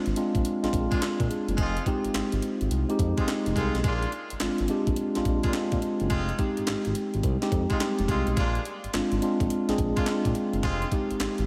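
A mellow tine electric piano sits up front in this punchy, slick new jack swing excerpt, its clean tone sounding as if heard through built-in speakers while it voices a Bb7 to Fm7 vamp in F dorian. Beneath it, a smooth synth bass blends sawtooth and square-wave character, with a fast attack, sustained notes and a touch of vibrato. The breakbeat sampler-style drum kit is also up front, compressed and gritty, with a thumpy kick, a high-tuned snare, hi-hat and handclaps driving a 106 BPM groove in 4/4 with a 16th-note swing. A clear, present horn section enters at 0.9 seconds with loose, jazz-style stabs carrying light vibrato and a diffuse ambient delay, dropping out at 10.9 seconds. A lush hall reverb bathes the whole mix, giving this R&B fragment a dreamy sheen.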